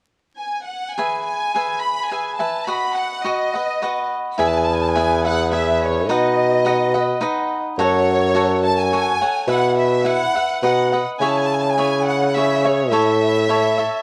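In a three-beat metre with a straight feel, this festive, proud mariachi passage opens with a rich chamber violin section carrying the melody, its bowed ensemble tone focused and full of vibrato. A crisp, picked acoustic cavaquinho joins with accompaniment at 1.0 seconds, and a mellow solo bassoon enters at 4.4 seconds with a smooth, classical-style bass line touched by light vibrato. All three sit up front in a dark, warm production with light reverb and a layer of vinyl crackle, and the chords move from bright major harmony toward minor colours before settling on A.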